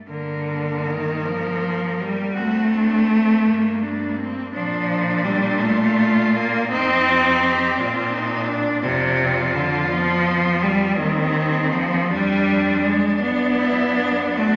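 A wet scoring-stage reverb surrounds this yearning, elegiac classical fragment for four rich, bowed cellos, cut from a longer piece and moving in a flexible, rubato 6/8. Up front, one cello plays a smooth, even accompaniment, while another carries the melody with light vibrato and a silken top. A second line sits distant in the background, a focused bass cello anchors the low end, and the harmony drifts through shifting chords to arrive on D/F# at 13.2 seconds.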